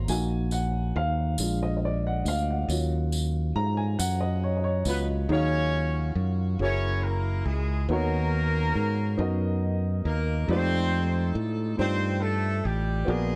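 Fervent and solemn, this slow gospel piece moves in a 6/8 lilt at 46 BPM in E-flat minor, cut from a longer performance. A dark, woody upright piano opens with a solo over a growly, punchy fingered electric bass that sits up front through the whole passage, while a jingly acoustic tambourine adds close shimmer until 5.3 seconds. A dark horn section enters with the melody at 4.9 seconds, playing as a pop-style ensemble in octave doubling with light vibrato and a distant, roomy character. The harmony grows richer as the horns come in, moving through extended chords such as Ebm11, Gb9 and F13 beneath the mellow piano. The sound is dry and direct, with little reverb around the players.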